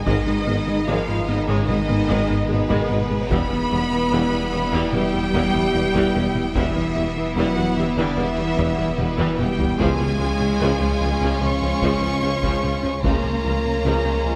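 Tense and brooding, this excerpt from a longer cinematic film score blends orchestra and electronics at a slow 74 BPM in a straight 4/4, moving from G#m to Em at 3.3 seconds and landing on C# at 9.8 seconds. A lush, distant symphonic violin section carries the melody with smooth vibrato, while a studio violin section traces a second line and an intense viola section fills in accompaniment beneath. Mellow French horns, a very quiet trombone section and a glassy, ethereal FM pad hold sustained chords, and a round, tine-like synth pluck adds gentle arpeggios. The low end is thick: a focused cello section, a bright but very quiet double bass section and a distant tuba share the bass with a dark, rumbling detuned saw bass, while a smooth gliding synth bass plays a riff with portamento. Close, dry taiko drums struck with heavy sticks drive from the background, breaking into a fill from 9.0 to 9.8 seconds, and a moderate concert hall reverb gives the orchestra its depth.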